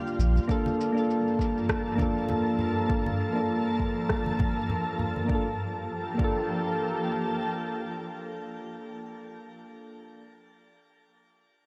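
Soft, round electric-piano-like synth keys sit up front in this smooth, wistful sunset chillout fragment, their mellow, fast-attack tones decaying through chorus, a low-pass filter, analog delay and shimmer reverb. Alongside them, a shimmering, ethereal ambient pad holds sustained chords with a slow attack and long release, its detuned, granular texture lifted by an octave-up shimmer. A deep, overdriven electronic kick drum sits forward in the mix. Layered electronic shaker and rim click add a gritty edge, and low-tuned congas with a thick skin hover in the background, played with hard hands and touched by analog delay. Filter sweeps move across the drums and the keys through the opening section, and the swung groove sits in a spring-reverb space with heavy echo. The shaker, rim click and congas drop out at 5.3 s, the kick follows at 6.4 s, the pad fades at 8.5 s, and the keys ring on alone until 10.2 s.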